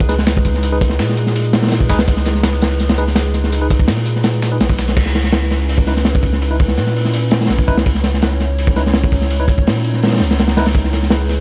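Drum and bass in a jungle vein, this raw, atmospheric cut from a longer piece rides an up-front, crunchy breakbeat kit with a punchy kick, dark cymbals and saturated grit. Underneath sit a deep, thick sub bass and a warbling, nostalgic tape-like pad whose sustained chords carry chorus and reverb, while a clean tine electric piano adds dub-echoed stabs in the background. A compressed, dusty soul sampler-style kit of filtered hi-hat, snare and tambourine plays low in the mix until 5.0 seconds, when the harmony shifts from G#m/C# to C#m9, and the dry hardware recording carries a layer of vinyl crackle throughout.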